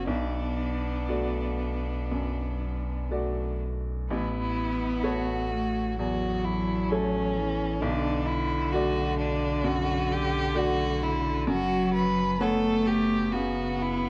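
Worn, warbling cassette tape with drifting pitch and a moderate large-studio reverb colour this fragile, reflective neoclassical excerpt in B minor, moving with a rubato feel at 59-67 BPM in 4/4 over Bm7, A6 and F#sus4. A single bowed, up-front violin carries the vibrato melody while a close, smooth cello sings a second line beneath it, both with a rich tone. A brilliant, woody upright piano gives vintage accompaniment, and a deep, sustained sine-and-triangle sub bass with an octave anchors the low end for all 14.1 seconds.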